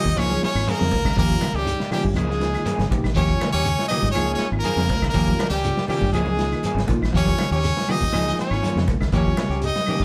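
A straight, hypnotic afrobeat groove from a dark, rolled-off vintage drum kit, punchy fingered electric bass, hard-handed bright congas, grainy shekere and woody claves carries this joyful fragment, where a brilliant, forceful trumpet leads the melody over a raspy, breathy tenor saxophone line, clean semi-hollow guitar arpeggios, lo-fi stabs from a slightly broken-up guitar with a warbly pitch drift, and a gritty overdriven reed electric piano with fast tremolo, all alternating between Db6 and Eb7 as a live band in a moderate stone room.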